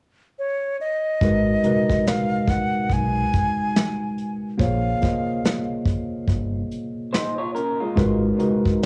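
A hazy home cassette recording in a small booth-like room carries this reflective lo-fi hip hop piece at 71 BPM in G# dorian, where a breathy, close-miked silver concert flute with vibrato, tape echo and plate reverb opens the melody at 0.4 s; a worn, slightly out-of-tune tine electric piano, a round, deep analog bass with a moving notch filter and a brush drum kit with a punchy kick and rolled-off top arrive at 1.2 s over G#m9 and A#m9 chords; and a dark, slightly broken-up electric guitar through a small old amp adds a brief second line at 7.1 s.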